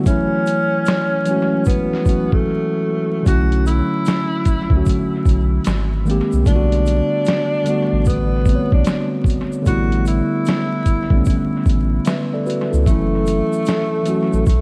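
A breathy tenor saxophone carries the melody of this hazy, melancholic lo-fi hip hop excerpt, played in a whispered, jazz-style subtone with scooped notes and vibrato, and it sits distant and roomy under a dub echo. Beneath it, an up-front tine electric piano lays down clean, mellow chords, also trailed by dub echo, moving through F#m7, Bm11, G#maj9, Gmaj9 and A7sus4 before returning to F#m7. The boom bap drum kit runs at 75 BPM in 4/4 with a 66% swing on the sixteenths, its pitched-down, compressed sound roughened by vintage 12-bit sampler grit and anchored by a thumpy kick and a medium-tuned snare. A grainy tube shaker ticks quietly in the background. A deep, round sub bass enters at 3.3 seconds after the opening break. Vinyl crackle, light reverb and a digital ambience wrap the echo-heavy mix, and the track is tuned to A4 = 441 Hz.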